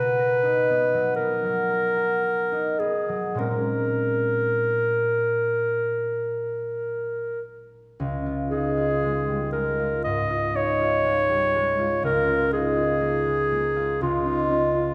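A bright, close-miked clarinet sings a wistful solo melody up front in this hazy impressionist classical duo, drifting in rubato over a ringing, fingerpicked concert harp whose acoustic accompaniment moves from Bmaj7 and Bbm9 into a second section at 8.0 s on Dbadd9 and Bbm7/Db, all in a wet recital hall reverb in this short piece cut from a longer work.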